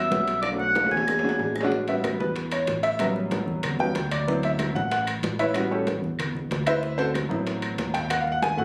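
A clear, distant oboe opens this sunny, sophisticated Afro-Cuban jazz excerpt with a brief classical-style phrase, heard over brilliant, woody upright piano and a growly, punchy fingered electric bass, while a drum fill starts at 0.4 seconds and the oboe stops at 1.5 seconds. From 1.7 seconds the up-front piano takes a solo, with its short sustain over chords like A13 and D13. Compressed and saturated metal-shell timbales ring out, while tight, high-tuned bongos, ringing congas, and dry claves sit behind the piano, all in a phone-captured room with club reverb.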